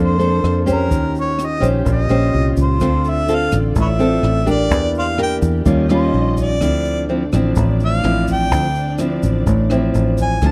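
Wistful and smooth, this bossa nova in D minor moves at 126 BPM in a straight 4/4, caught as a cut from a longer piece. A harmonica carries the melody as a jazz-style solo from the first second, its tone warm with light vibrato, scooped notes and occasional tongue slaps. Up front, a fingerpicked nylon-string guitar in classical style and a punchy, foam-muted fingered electric bass frame the tune. Behind them, a lush bowed string section holds sustained chords, while a jazz brush drum kit with a boomy kick, hi-hat and rim click, and a grainy, bright tube shaker enter at 0.2 seconds in the background. The harmony drifts through chords such as Bbmaj9, Eb13, Dm7 and Em7b5, all set in a small room with a dry, close 1970s-style studio sound.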